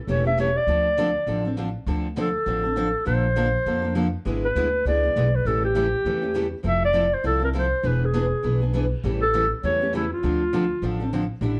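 Fiery and virtuosic, this excerpt of acoustic string swing in D minor races at 201 BPM with a breathy, whispered clarinet carrying the melody up front through plate reverb from 0.1 to 11.1 s, over a bright picked auditorium guitar, a boxy parlour guitar and a woody, growly pizzicato upright bass moving through Dm7, Bbmaj7, E7/G# and A7 changes in a dark, warm room.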